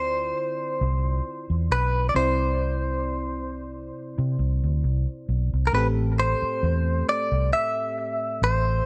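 Swung sixteenths at a slow 67 BPM set up a moody, sensual contemporary R&B fragment in A minor, where a round, foam-muted vintage electric bass sits up front beneath glassy, bell-like FM electric piano chords with chorus, and a bright, twangy clean electric guitar carries the melody through analog delay over Dm7 and C before settling on Am7 at 5.7 seconds, all captured in a dry, gritty hardware recording.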